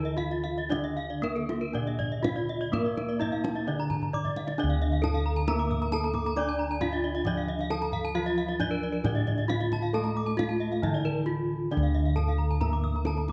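A straight 4/4 pulse running between 114 and 134 BPM drives this brilliant, shimmering Balinese gamelan passage in D pelog. A wooden-mallet bronze metallophone carries the melody with tape echo over a lower, vintage-toned metallophone accompaniment, while two bright horn-mallet metallophones ring out paired-tuning arpeggios. Full, up-front bossed gongs hold the bass, and a deep kendang sits in the background, playing a fill from 4.0 to 4.6 seconds as the music moves into its second section, all captured with close, detailed microphones and light reverb.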